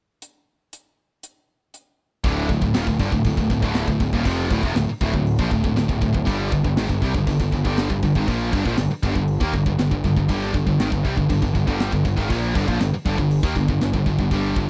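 A dry, close recording with a 1970s studio character frames this relentless, aggressive heavy metal cut from a longer piece. A tight metal drum kit opens alone at 0.2 s, its crash, hi-hat, polished high-tuned snare and tight kick sounding acoustic and airy, as if in a big room. At 2.2 s the band crashes in: a high-gain distorted guitar sits up front with a picked riff, while a second compressed distorted guitar plays a riff further back in the mix. A growly, fuzz-laden picked electric bass, direct and amped with overdrive, sits up front beneath them. The harmony moves from D minor to a G power chord at 6.3 s, and the bright guitars and bass keep the assault going to the end.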